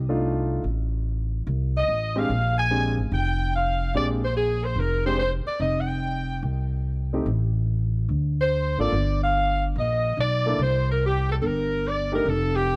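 An edgy saxophone section carries the melody in this joyful big band swing fragment, its ensemble vibrato sitting up front and present in the mix from 1.8 seconds onward. Beneath it, a woody upright bass with steel strings plays pizzicato from the very start, also placed up front. A warm, polished baby grand piano supplies the accompaniment in its middle register, entering almost at once and stopping at 12.2 seconds. The harmony moves through rich extended chords, with a brief chordless moment at 7.3 seconds before settling back toward home. The whole thing swings with a lilting triplet feel and has the dry, close sound of a 1970s studio, cut from a longer piece.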